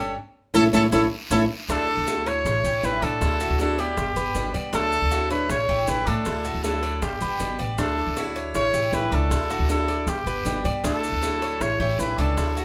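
This relaxed Cuban son and guajira clip in D major at 157 BPM opens with the band hitting a shared accent from 0.2 to 1.7 seconds over an A chord. The trumpet carries the melody up front, punchy and roomy with vibrato in a pop-style solo voice, while the upright bass sits forward with a woody, growly, thumpy pizzicato tone. Underneath, a fingerpicked classical nylon-string guitar plays a second line, a bright, boxy swing-style acoustic guitar picks out the accompaniment, and the Cuban tres spins metallic, double-string arpeggios with some octave-doubled strings. At 0.5 seconds the percussion slips in at the back: tight, high-tuned bongos played with soft hands in a large room, a raspy guiro and grainy, mellow maracas. From 1.7 seconds the harmony cycles through Dadd9, A7, Dadd9 and G, and a moderate studio reverb gives the whole clip a warm, easygoing glow.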